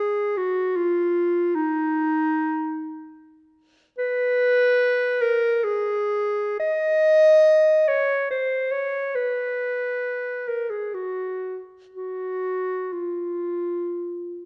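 A warm, smooth-topped clarinet sings alone and up front in this nostalgic, lyrical classical fragment in free time, its expressive line drawn from a longer piece and bathed in the lingering, wet reverb of a recital hall within a dark, warm production.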